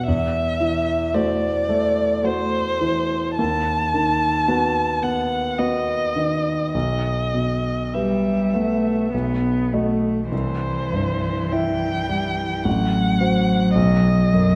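Solemn and melancholic, this slow romantic movement for piano trio unfolds in 3/4 at 48-56 BPM with a flexible rubato feel, cut from a longer piece. A warm, up-front violin carries the melody with vibrato, a soft attack and expressive portamento over a clear, intimate grand piano accompaniment whose action noise is audible, while a rich, smooth cello adds a bowed second line from 1.1 s. The dark production sits in a generous scoring-stage reverb, and the harmony moves from F#m7b5/E through Em/B and C to close on B.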